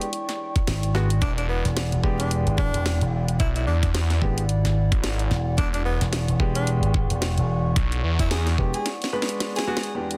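Swaggering and gritty, this glitch hop excerpt swings its sixteenths over a single E7#9 chord, cut from a longer piece. A dark, detuned analog pad holds sustained chords under chorus, while a polished baby grand piano punctuates with filtered stabs trailed by delay, both pumping against the sidechain. A drum and bass kit with a cracking snare and hi-hat runs throughout, joined at 0.6 seconds by a knocking, up-front electronic kick. Two basses drive the low end: a punchy, amped slap bass with an envelope filter and a thick, swirling detuned saw bass, saturated and phased. A mellow, close-miked tenor saxophone carries a jazz-style solo with light vibrato and scooped notes, its lines echoing through delay and continuing as a break with a drum fill arrives at 8.9 seconds, and a barely audible granular cloud pad appears in the final moments. The digital ambience and dense, heavily limited master keep the mix tight and forward.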